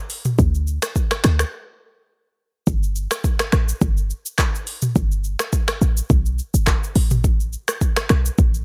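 Afrobeats in G major at 105 BPM, this short, sunny and joyful excerpt moves in 4/4 with a light swing on the sixteenths. An electronic, produced afro-pop drum kit sits up front, its deep kick and metallic hats joined by finger snaps, handclaps, rim clicks, shaker and toms. A short 808-style bass enters at 0.4 seconds, a punchy, tight sine tone with a noise layer, fast attack and decaying notes between G1 and D2, also placed up front. A break falls between 1.5 and 2.7 seconds, after which a new section carries the groove to the end of the clip. The sound is dry and close, with little reverb.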